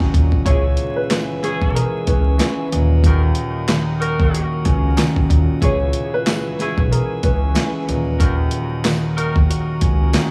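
Dark and gritty, this boom-bap hip-hop excerpt swings on an overdriven, sampler-style drum kit with a thumpy kick, snare, handclaps and hi-hat, joined by a growly pizzicato upright bass and a ringing, fingerpicked concert harp up front with a cassette-tape tint. A mellow, intimate upright piano carries the melody from 0.5 s alongside tight saxophone section stabs, both trailed by tape echo, while a shouting tonewheel organ holds chords through a stopped rotary speaker and a jingly tambourine sits in the background. Vinyl crackle and small room ambience surround the parts as the harmony moves between C#m7 and D#m7.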